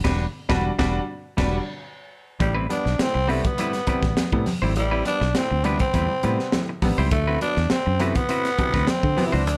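Funk with a cool, funky attitude, this short cut opens with the whole band hitting an accent over Em9 as the crisp fusion drum kit, fingered electric bass and semi-hollow electric guitar get going. The drums sound punchy and up front in a small, pumping room, with bright cymbals and a high-tuned snare, while the round, foam-muted bass sits equally forward. The clean, compressed guitar adds hollow-body accompaniment, and from 0.5 seconds a bright upright piano drops woody, slightly detuned stabs from the background, its action noise audible. At 2.4 seconds the harmony shifts to Am9 and a raspy, growling tenor saxophone takes the solo melody up front with light vibrato, joined by ringing, very quiet congas. A D13 chord arrives at 7.1 seconds, and light reverb gives the parts a touch of space.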